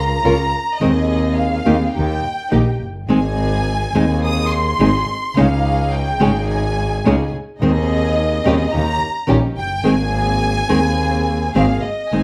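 This tense, melancholic tango excerpt opens at 0.0 seconds with a lush symphonic violin section, bowed with vibrato and a smooth top, carrying a featured solo line high in its range throughout. Beneath it, a dark chamber string section plays soft-attacked, sul tasto stabs with an intimate, close sound, while a clear, focused double bass, bowed by one player with vibrato, anchors the low end from a slight distance. A fingerpicked nylon-string guitar with a bright, fresh-stringed tone joins at 0.2 seconds as the accompaniment, sitting up front in the mix. The pulse is 106 BPM in 4/4 but flows with a rubato feel in Ab major, moving through chords such as Bbm/Db, Dbsus2 and Eb7 before reaching Abadd9 at 9.9 seconds. A moderate large-studio reverb and a dark, warm production surround the ensemble in this passage cut from a longer piece.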